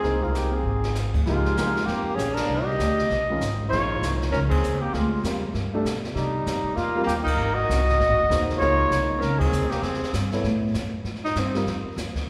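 Warm and swinging, this fragment of small-group swing and bop jazz moves at 196 BPM in Ab major. An up-front flugelhorn carries the scooped melody over a breathy, vibrato-laced tenor saxophone second line, a mellow concert grand piano accompaniment, a woody pizzicato upright bass and a distant brushed drum kit with a boomy kick. A drum fill arrives at 0.6 s, band accents punctuate the middle, and a tenor saxophone solo begins at 11.0 s, all bathed in the long, wet reverb of a church.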